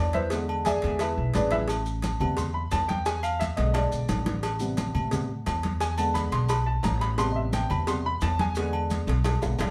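Passionate and fiery, this salsa fragment in A minor at 174 BPM features a woody, polished upright piano soloing up front over E7 and Am9 changes, with a thumpy gut-string pizzicato upright bass, bright thin-skinned congas in the background, tight high-tuned cowbell and bongos, ringing agogo bells and timbales, and grainy, saturated maracas, all set back in a wet studio reverb, with drum fills at 3.7 and 9.1 seconds.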